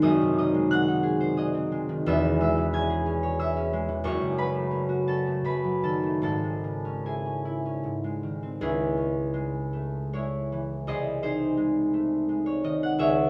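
A fingerpicked concert harp sounds up front from the first moment, its warm, ringing tone filling a wistful, mysterious classical fragment in C# minor, played in a rubato 3/4 at roughly 73-92 BPM across a span from E1 to G#6, with a moderate stone-room reverb settling around each chord until the music turns to a new section at 8.6 seconds and is cut off at 13.3 seconds.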